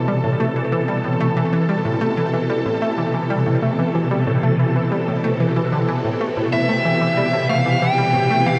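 Mysterious and cosmic, this short excerpt of ambient, sequencer-driven space music moves at 93 BPM in a straight 4/4, resting in A minor on an Amadd9 chord. A swirling, vintage string machine holds sustained chords from the start, its warbling tone shaped by ensemble chorus, phaser and shimmer reverb and placed up front in the mix. Beneath it, an analog pluck plays a low riff with a round, detuned timbre, a fast attack and short decay, colored by chorus, delay and shimmer reverb. At 6.5 seconds a bluesy, overdriven electric lead guitar enters with a picked, distorted melody in a high register, carried by delay and shimmer reverb. The whole sits in a huge, wet ambient space with a long reverb tail, giving the brief passage a vast, drifting sense of depth.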